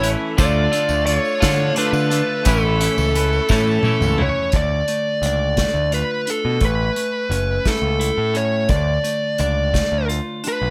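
Indie rock in a carefree, upbeat 6/8 lilt, cut from a longer piece, where a dark, fuzzy lead guitar with slapback echo carries the melody up front over a growling, overdriven picked bass, a biting overdriven guitar riff, a clean, twangy fingered guitar riff drenched in lush chorus and slapback in the background, and an acoustic drum kit played with bundle sticks that rolls through a fill from 3.5 to 4.5 seconds, while a jingly background tambourine and a very quiet, swirling phased string machine color the opening, the tambourine dropping out around 4.2 seconds and the string machine around 4.5 seconds, all moving between Dm and Aadd9 in a small room with light reverb.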